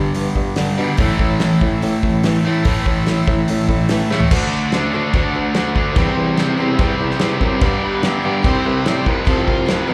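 Classic rock with a confident, swaggering strut, this excerpt from a live club gig pairs an up-front crunchy overdriven guitar riff with a very quiet, compressed distorted electric guitar riff over a fat-snared, dark-cymballed 70s drum kit, a mellow bassoon with light vibrato carrying the bass line, a shimmering octave-doubled twelve-string acoustic guitar tucked beneath, and a very quiet, shouting tonewheel organ with key click and slow rotary swirl entering at 1.0 seconds, while a drum fill at 4.1 seconds leads into a new passage where a background overdriven guitar line with slapback echo and analog delay joins at 7.6 seconds.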